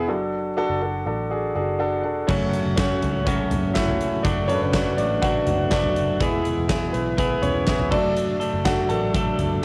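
A clear concert grand piano leads this short piano-driven pop excerpt, its intimate, polished tone carrying audible action noise, deep bass and long sustain, with a cassette tape coloring that sits up front from the start. At 122 BPM in a straight 4/4, the mood is driving yet bittersweet, opening on D/F# before moving through F#m, D/F# and E. A vintage muted fingered electric bass supports it throughout, dark, round and punchy with a foam-muted, amped character. At 2.3 seconds the piano takes a solo as an electric guitar at the edge of break-up joins with a picked, compressed riff, also carrying a cassette tape coloring, alongside a huge arena drum kit with punchy kick, medium-tuned snare, bright cymbals, handclaps and toms in a pumping hall room. The home cassette recording has light reverb and studio ambience, and the clip is cut from a longer piece.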